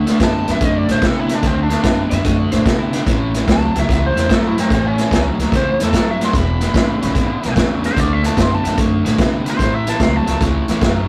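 A swaggering electric blues shuffle swings at 147 BPM in 4/4, driven by an up-front vintage drum kit with a tight kick, medium-tuned snare and hi-hat and a rolled-off top, alongside a woody pizzicato upright bass and a low, overdriven semi-hollow guitar riff moving through D6, A6 and E6 chords in A major. A bright, biting lead guitar sings the soulful melody across nearly the whole fragment, while a compressed, slightly broken-up electric guitar adds a faint second line in the background only until 3.4 s. The rough rehearsal-room sound carries tube saturation and a short small-room reverb.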